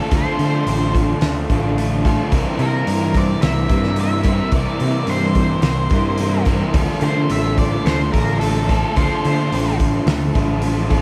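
A loose indie drum kit with a fat snare and boomy kick sits up front in a pumping studio room, anchoring this melancholic, hazy shoegaze and dream pop excerpt as a bright, growling bass joins two picked, overdriven guitar riffs in the background (one dark and compressed with reverse reverb, the other a hollow-body bathed in lush chorus), a very quiet clean, direct-recorded guitar playing arpeggios and an octave-fuzz lead melody with analog delay that stops at 9.8 s, all floating in a huge, reverb-soaked mix with vinyl crackle over Dm7 and C7.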